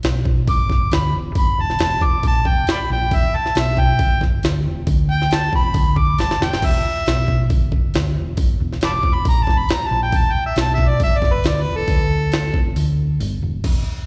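Brooding and smoky, this blues rock and southern rock power-trio excerpt places a bright, close-miked harmonica up front for a jazz-style solo. The harmonica runs through overdrive, slapback echo and digital delay, and its soft-attack notes are scooped and punctuated with tongue slaps. A dark, round hollow-body short-scale electric bass and a gritty, compressed, pitched-up sampler-style jungle kit with a thumpy kick support it, with a drum fill at 6.2 seconds and a break at 12.8 seconds, all heard as a live gig through the venue's PA in a recital hall's reverb.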